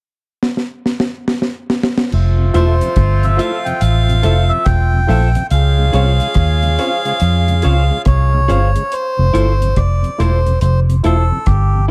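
A deep reggae drum kit opens this uplifting roots reggae excerpt with a fill, its high-tuned snare, tight kick, hi-hat, rim click and crash cymbal sounding dry and smooth with a rolled-off top. At 2.1 seconds a round, foam-muted fingered electric bass arrives up front, joined by a clear horn section playing a tight, octave-doubled second line with light vibrato and dub echo. A mellow tonewheel organ turning through a slow rotary speaker, a slightly broken-up picked electric guitar with dub echo, and a barky, reedy electric piano playing stabs sit in the background. The melodica carries the melody close and breathy, its nasal tone trailed by dub echo. At a relaxed 71 BPM with a swung sixteenth feel, the harmony moves from Fmaj7 to Dbmaj7 and back, the horns dropping out at 8.5 seconds, all within a dark, warm studio-reverb production.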